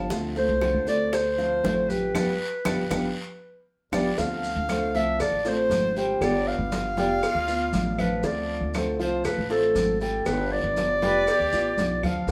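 Relaxed and danceable, this excerpt from a longer Cuban son and guajira piece moves at 118 BPM in a straight 4/4, circling between Dm7 and G7. Up front, a breathy jazz-style clarinet carries the solo melody with light vibrato. A dark, boxy grand piano with audible action noise and long sustain plays arpeggios, while a small, fingerpicked nylon-string guitar gives warm accompaniment over a thumpy, woody pizzicato upright bass. The percussion is layered: ringing, low-tuned congas played with soft hands join a raspy guiro, while tight, high-tuned bongos and cowbell, distant woody claves and grainy maracas stay in the background. Early on, a band accent and a drum fill lead into the second section, where a silver concert flute with an airy, soft-attacked tone adds a brief expressive second line at 7.0 and 11.0 seconds. The band plays live together in one room, with a wet studio reverb.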